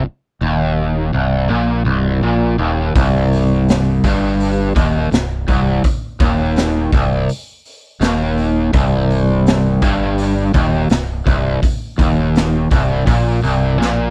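A dry, close-up mix opens this driving, gritty cut from a longer blues rock and southern rock power-trio piece at 83 BPM in a straight 4/4, resting on a C5 chord. A bright, double-tracked overdriven semi-hollow guitar plays a picked riff up front with a harmonic tremolo shimmer, while a growling fingered bass adds its own punchy overdriven grit underneath. At 3.0 seconds a raw garage drum kit comes in with a pumping small-room sound, punchy kick, medium-tuned snare, hi-hat and a saturated, rolled-off top, closing with a drum fill at 13.8 seconds.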